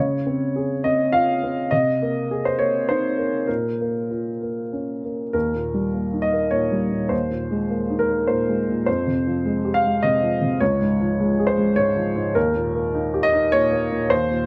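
Light reverb surrounds an up-front baby grand piano whose worn tone and long sustain give this short passage, cut from a longer piece, a melancholic, reflective cast. The solo piano plays neoclassical minimalist music at 102 BPM in 3/4 with a rubato feel, ranging from Db2 to F5 over 14.5 seconds. The harmony opens on Dbmaj7 and moves through Abadd9/C and Bbm before a new section at 5.3 s turns to Eb, Abadd9/Eb, Fmadd9 and Db, settling on Eb at the close.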